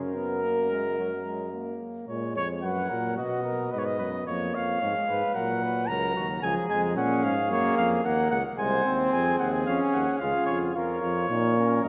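A straight 4/4 pulse at 110 BPM drives this contemplative classical canzona for brass ensemble in F# major, cut from a longer piece, where a mellow, vintage trumpet carries the melody up front over a smooth-topped flugelhorn second line, a warm, close-miked trombone accompaniment and a dark euphonium bass, also up front, with light vibrato and a soft attack, all four sounding throughout the 11.9 seconds inside a wet church reverb.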